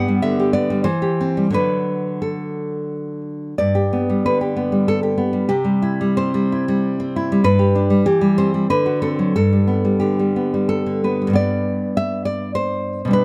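Tender and warm, this short romantic piece for solo classical guitar unfolds in a gentle 3/4 with a flexible, rubato feel. A single nylon-string guitar carries everything from 0.0 to 13.2 seconds, fingerpicked and sitting up front in the mix, its acoustic tone spanning from G2 up to F#5. The harmony moves through simple, sweet changes, settling back on G around 9.3 seconds after a D7 leads home. A fresh section begins at 11.4 seconds, just before this cut from a longer piece ends. The close, detailed recording captures the intimate sound of the strings, softened by a light touch of reverb.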